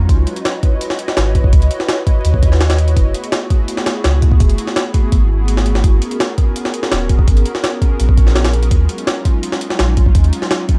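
Driven by a straight, up-front jungle beat from a compressed, pitched-up sampler kit with a thumpy kick, high-tuned snare, hi-hat, overdrive and a touch of reverb, this dark, atmospheric drum and bass excerpt rides a deep, round dub sub bass and an airy, breathy pad with a nasal, detuned chorus shimmer, sustaining minor eleventh chords from C#m11 through F#m11, G#m11 and D#m11, all captured in a dry, gritty recording dusted with vinyl crackle.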